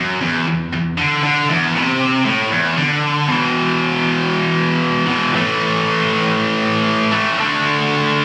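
A high-gain, distorted electric guitar plays alone up front in this heavy, epic metal excerpt, its bright, picked tone double-tracked and trailed by tape echo across a range from E2 to D4. An opening passage free of chords gives way at 3.3 seconds to a second section that moves through E5, A5 and D5 in a straight 4/4. The sound was captured on a phone in a room, with a light club reverb and digital ambience around it.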